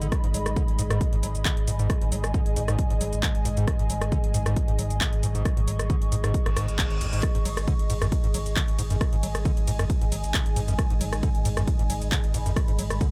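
Driving peak-time techno at 135 BPM in G# minor, relentless and industrial, with a heavy, up-front kick that enters at 0.1 seconds and layered, tape-warm drums of handclaps, hats, ride, rim click and shaker, while a squelchy, gritty acid bass riff with subtle chorus and sidechain pumping rides over a deep, thick sub bass, beneath an eerie, metallic, warbling drone and an airy, breathy pad, with a reverse cymbal at 6.5 seconds in this dry, cut-down section.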